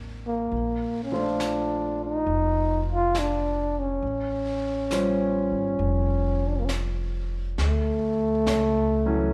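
A grand piano and a woody, growly upright bass open this intimate, tender swung jazz ballad, cut from a longer piece, with extended and altered chords. A breathy, whispered trombone enters up front with a mellow solo melody at 0.3 seconds, and a dark, smooth brush kit joins at 0.5 seconds, the whole ensemble sitting in the moderate reverb of a recital hall.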